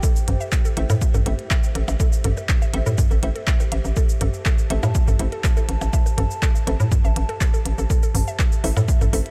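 Minimal techno at 122 BPM in A minor, cool and hypnotic, built on a punchy, up-front analog kick and a hollow, bouncy FM bass that pumps to the sidechain, with an overdriven click kit of cabasa, handclaps and clicky hi-hat, tape-warm electronic toms and percussion blips in the background, a woody, nasal mallet-like synth pluck riff with chorus, analog delay and sidechain pumping, a crisp, wave-folded wavetable chord stab entering at 0.8 s through cassette tape and diffuse ambient delay, and a warbling, lo-fi pad with chorus and pumping, all set in a digital ambience.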